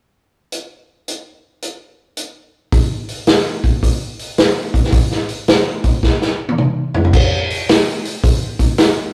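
A rough rehearsal-room sound with tube saturation frames this short rock clip, and a moderate stone-room reverb gives the kit a natural, roomy halo. A vintage acoustic drum kit carries the whole piece on its own, playing from 0.5 to 8.9 seconds and sitting up front in the mix. The mood is driving and swaggering, set at 109 BPM in 4/4 with a 66% swing on the eighth notes. The kit features a punchy kick, a medium-tuned snare, hi-hat, toms and crash cymbal, all heard with a warm, rolled-off top end. The clip moves through three short sections, and a drum fill from 6.0 to 7.1 seconds leads into the final stretch.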